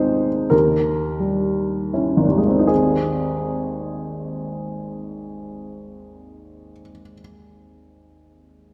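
This is a romantic classical nocturne for solo piano, serene and nostalgic in mood, moving in 6/8 with free rubato. An upright piano carries the whole fragment, intimate and woody in tone, slightly detuned, with audible action noise that lends it a natural, close-up character. It sits up front in the mix, spanning from deep bass notes to the middle register. The opening phrase slows down over its first 2.7 seconds before a new section begins, and the short passage, cut from a longer piece, ends at 8.7 seconds. A wet scoring-stage reverb with a long tail surrounds the instrument, and the dark, warm production adds to the reflective atmosphere.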